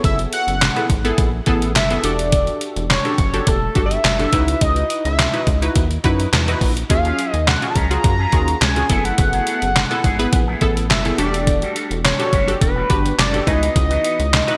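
A fat analog sawtooth lead with sub-octave weight, vibrato, chorus, phaser and delay carries the melody from the first moment of this late-night, slick early-eighties boogie funk at 105 BPM. Beneath it sit a punchy, detuned polysynth comp with chorus, a rubbery, wave-folded square bass, and an overdriven, up-front 8-bit drum machine with thumpy kick, snare, handclaps and hi-hat re-recorded in a large room. At 6.9 s a dark, clean electric guitar with an envelope filter and lush chorus adds a riff in the background as the Gbm11, Em11, Dbm11 and Ebm11 chords cycle, all in a bright 1980s-style digital production with light reverb.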